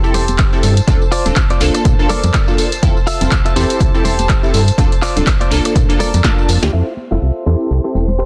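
A short, feel-good clip of filtered disco house opens with a detuned sawtooth polysynth comp under chorus and phaser, a twangy, bright clean electric guitar riff, soft sul tasto violin chords floating in the background with vintage 12-bit sampler grit, and a dry analog drum machine of handclaps, hi-hat, tambourine and a soft-clipped snare; a snappy, metallic FM slap bass and very quiet, hard-handed congas and tambourine join at 0.1 seconds, and an up-front, punchy electronic kick drives from 0.4 to 6.4 seconds. A drum fill leads into a filter sweep over the closing seconds, while sidechain pumping and low-pass filtering shape the synth, guitar, strings, bass and drum machine in a dense, heavily limited, nearly reverb-free mix.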